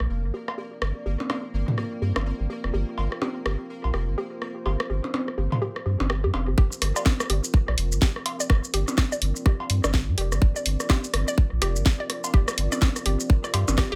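Minimal techno at 125 BPM in G minor, clinical and cool, with a swung sixteenth feel. A thick, saturated sub bass pumps against the sidechain beneath a layered garage kit of shaker, filtered hi-hats and a cracking snare, while a tape-warm techno kit adds cowbell, rim clicks, toms and blips thrown into dub echo. A hollow, detuned square pluck bounces through its own echoes over a deep, moody pad and a bright, gated texture that pulses until 6.6 s, when the drop arrives and an up-front electronic kick enters.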